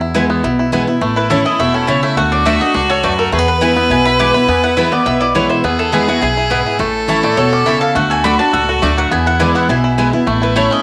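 A twangy fingerpicked banjo melody, a bright, full-bodied steel-string guitar up front and a dark pizzicato upright bass open this rustic, driving bluegrass excerpt at 207 BPM in E mixolydian, joined by warm mandolin stabs, then from about 1.0 s a clear, smooth fiddle second line with light vibrato and, moments later, a woody double-string mandolin melody in the background, all set in a small room with moderate spring reverb on a home cassette recording.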